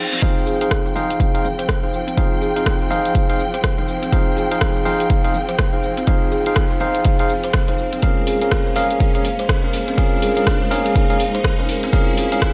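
Over a steady 4/4 at 123 BPM with a 60% swing on the sixteenths, a punchy electronic kick sits up front while a layered deep house kit of hi-hat, rim click, shaker and toms ticks through filtered tones, setting an earthy, hypnotic afro house groove in F minor. This excerpt from a longer piece opens with a reverse cymbal at 0.0 seconds, and a background riser builds across the whole passage. A clean tine electric piano, heard through a combo amp with delay, plays stabs, and a woody kalimba rings out plucked arpeggios in the background, both breathing with sidechain pumping. Behind them a distant, lush studio string section holds bowed sustained chords with expressive vibrato, also pumping, moving from Fm7 to Bbm7 at 8.0 seconds. A round sine sub bass sits barely audible underneath, and the mix rests in a light digital ambience.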